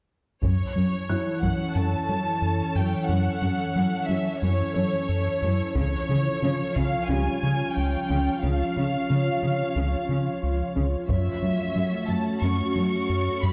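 Cinematic hybrid orchestral and electronic film score excerpt in F# phrygian at 90 BPM, relentless and futuristic, where a distant, lush violin section carries the melody over a focused cello bass line, a round, deep analog bass riff, a pure organ-like pad with ensemble chorus entering at 0.9 seconds, a very quiet felt-muted upright piano adding mellow texture, and close, dry taiko passages at 0.4–1.7, 5.8–7.1 and 11.1–12.4 seconds, all set in a moderate scoring-stage reverb with a dark, warm production as the harmony moves from F#m7 to C# and back.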